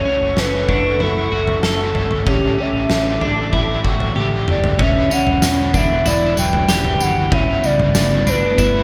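Dream pop at 95 BPM in E dorian, haunting and ethereal, where a hollow, woody clarinet-like synth lead carries the melody through chorus, shimmer reverb and digital delay over a twangy, compressed electric guitar at the edge of break-up playing arpeggios and a double-tracked, crunchy overdriven guitar with harmonic tremolo. A soft, flute-like pad sustains warbling chords in the background, a round, dark picked bass enters at 0.2 seconds, and an oversized low-tuned drum kit with a fat snare, punchy kick, tambourine and toms arrives at 0.4 seconds, gritty and up front in gated reverb. The harmony opens on F#m7, and a drum fill at 4.2 seconds leads into Em7 at 4.8 seconds and then Gmaj9, all within a bright 1980s-style digital production set in a moderate plate reverb.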